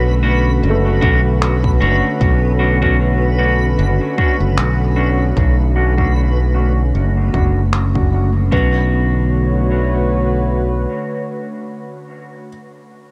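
A 4/4 groove at 76 BPM with a 56% swing on the 16ths drives this hazy, deep ambient dub excerpt in B minor: a warbling, detuned tape-like pad holds sustained chords through chorus and reverb, a felt-muted upright piano plays soft, intimate arpeggios with audible action noise, a bright fingered electric bass sits up front, a reversed granular texture swells dreamily in the background, a clean picked electric guitar plays low-pass-filtered stabs through dub echo with a filter sweep until 8.5 seconds, a deep, tape-warm electronic kick enters at 1.0 seconds, and muffled, pitched-down electronic finger snaps join at 1.4 seconds with overdrive and dub echo, inside a light digital ambience.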